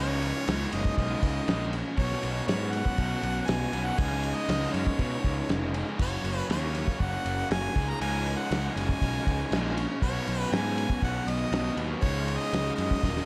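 Driving and gritty, this classic rock excerpt at 119 BPM in 4/4 sets a clear, vibrato-laden harmonica melody with scooped notes and slapback echo over Dbsus2, Bsus2 and Gb chords, backed by a punchy, up-front fuzz bass, a crunchy overdriven guitar riff with its own slapback echo sitting in the background, a bright, very quiet distorted guitar playing a tight riff, and a very quiet tonewheel organ holding chords through a slow rotary speaker with key click, while a cloth-damped, thuddy drum kit with a fat snare, tight kick and dark cymbals enters at 0.2 s and plays a fill at 13.0 s, all within a lush hall reverb that gives it a big arena sound.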